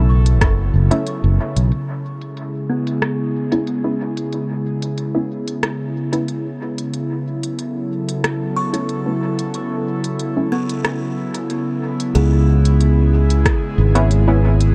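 This meditative, hazy ambient dub excerpt opens at 92 BPM in C# minor with a breathy, chorused pad, a buzzing, woody kalimba arpeggio softened by a low-pass filter and dub echo, muted, detuned chord stabs with chorus and echo, and an up-front fingered electric bass that plays until 1.7 seconds. A produced electronic kit of smooth filtered hats and rim clicks soon follows with dub echo, and a deep, layered kick lands only briefly near the start and again near the end. From 1.7 to 12.2 seconds, filter sweeps move across the drums, pad, stabs and kalimba over C#m7 moving to B9sus4, and the bass returns for the final stretch in light digital reverb.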